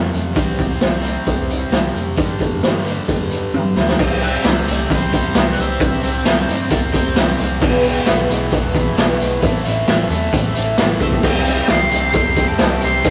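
Swaggering and gritty, this classic rock passage pairs a bright, double-tracked overdriven guitar riff and a growly, punchy bass with a boomy, saturated garage drum kit up front and a very quiet shimmering twelve-string acoustic, while a grainy egg shaker joins at 4.0 seconds, a dark octave-fuzz lead and a nasal parked-wah guitar weave lines in the background in two bursts, and a very quiet tonewheel organ on slow rotary enters at 11.2 seconds, all wrapped in a rough rehearsal-room sound with tube saturation.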